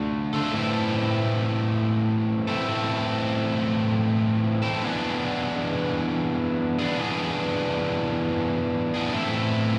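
A cranked stack guitar carries this short rock cut from a longer piece, its bright, overdriven electric tone picked and double-tracked, sitting up front with a slapback echo trailing each phrase. Playing solo for the full 9.8 seconds, it ranges from A2 to A4 over a swung 4/4 feel at 111 BPM in A minor, with its tuning set to A4 = 441 Hz. The harmony moves from Dm into Am, shifts to E7 at 4.8 seconds, and settles back on Am at 9.2 seconds. The mood is smoky and gritty, heard as a live gig through the venue's PA, with a moderate club reverb and a recital hall reverb adding space around the guitar.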